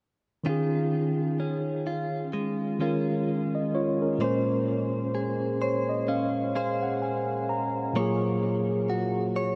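A clean, up-front tine electric piano carries the accompaniment in this slow, moody R&B piece at 64 BPM, with a swung sixteenth feel and a late-night air, and adds a fill from 5.1 to 8.0 seconds. A bright, picked electric guitar, recorded direct and compressed, spins arpeggios beside it through subtle chorus and a diffuse ambient delay, moving over Eb9sus4, Bbm9 and Gbmaj7/Bb chords. The whole dreamy mix is soaked in a huge, long ambient reverb and tuned slightly flat of standard pitch, as a short cut from a longer piece.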